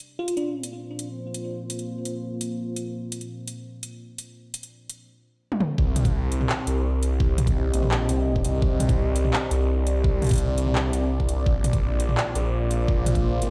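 Played back through a big sound system in a bare stone room with light reverb, this tense, cinematic half-time drum and bass cut at 169 BPM in C minor opens on a deep, moody analog pad with chorus and sidechain pumping under a filter sweep, a brief sparkling bell-like FM electric piano figure with phaser and delay, and an up-front drum kit of handclaps, metallic hats and toms, until a drum fill at 5.5 seconds tips into the drop at 5.8 seconds, where a knocking electronic kick and a swirling, thick, saturated detuned saw bass arrive over chords moving from Cmadd9 back to Bbadd9.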